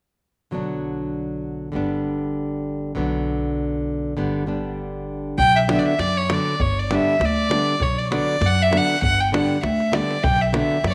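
Balkan folk in a wedding-band style, this fiery, virtuosic fragment of a longer piece moves in a lightly swung 2/4. From 0.5 s, an up-front nylon-string guitar fingerpicks a classical-style accompaniment over a woody, dark pizzicato upright bass, the two cycling between B minor and G. At 5.4 s, a pure, floating bowed violin enters to carry the melody, its soft attack and tape echo placing it clearly at the front. A deep, close and dry davul joins at the same moment, sitting in the background. The whole band is set in a moderate echo-chamber studio reverb.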